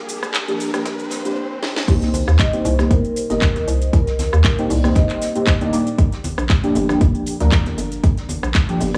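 A deep, mellow chord stab leads this late-night deep house excerpt in C minor at 117 BPM, its dark, detuned tone coloured by chorus, phaser, cassette tape and tape echo and pumping against the sidechain. The opening build-up pairs it with a hollow, flute-like pad held very quietly underneath and an electronic riser and swell, while a filter sweep on the stab leads toward a drum fill at 1.6 seconds. At the drop at 1.9 seconds, a hollow, bouncy FM bass arrives with a knocking punch, saturated through a transformer and pumping too, as the harmony moves from Gm7 to Cm7. The punchy, tape-tinged electronic kick sits up front, joined by a layered house kit with cracking snare, metallic hats, handclaps, rim clicks, shaker and crash, a faint natural acoustic kit, and hard-handed congas kept very quiet. From 2.4 to 5.7 seconds a close-miked vibraphone played with soft mallets rings out with a medium motor vibrato and tape echo, before the chords return to Gm7 at 6.0 seconds, all within a dry, gritty small-room sound.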